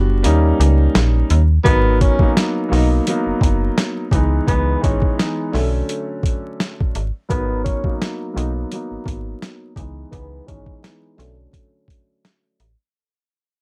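A dry, gritty recording with vinyl crackle sets a tough, dark mood for this boom-bap hip-hop fragment, cut from a longer piece and swung loosely in 4/4. A metallic FM bass with a fast, decaying attack and transformer saturation sits up front beside a dark baby grand piano, whose mellow, vintage tone and long sustain carry seventh chords through high- and low-pass filtering. The sampler-style drum kit is compressed and pitched down, with a thumpy kick, a medium-tuned snare and hi-hat; the kick stays muted until 1.7 s. From 1.6 s a breathy tenor saxophone takes the melody in a jazz style, with vibrato, scooped notes and an analog delay. From 1.7 s the whole passage fades out under a filter sweep.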